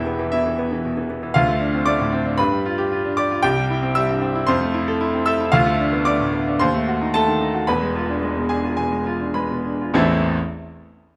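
In a rubato 4/4, this stormy, agitated excerpt from a virtuoso classical piano study has a solo grand piano ranging from deep bass E1 up to E6, captured with close, detailed microphones that keep its tone clear and up front. From 4.5 seconds the pace slows as the harmony darkens through a half-diminished and a diminished seventh chord to a tense E7b9, and the piano lands on A minor at 10.0 seconds. A moderate recital-hall reverb frames the present, detailed sound until the piano stops at 10.4 seconds.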